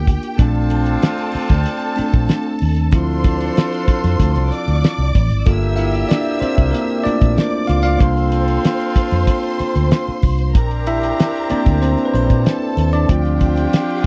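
Cinematic and silky, this short cut from a longer piece is lush 1970s-style soul in a straight 4/4 at 94 BPM. A bell-like, clean tine electric piano takes the solo throughout, bright and direct over a progression that moves from Bbmaj9 through Dm7, Gm7 and C7sus4 before returning to Bbmaj9. Up front, a damped 70s drum kit supplies a fat snare, tight kick and hi-hat with a dark, rolled-off top, while a foam-muted fingered electric bass sits round and punchy in the low end, stopping at 13.7 seconds. A horn section adds smooth-topped stabs with light vibrato, and a distant studio string section carries a bowed second line with expressive portamento. A shimmering triangle glints faintly in the background, and the whole recording has a dry, close 1970s studio sound with little reverb.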